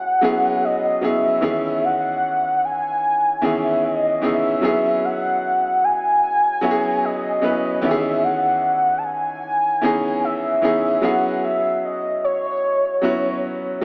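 A lightly swung 16th-note feel at 75 BPM in 4/4 carries this moody, late-night R&B excerpt in C# minor, where a velvety, smooth synth lead with chorus, vibrato, portamento and tape echo sings the melody up front over a bright, short-sustained baby grand piano moving between E69 and C#m7, in a dreamy mix soaked in plate reverb with a small-speaker sound.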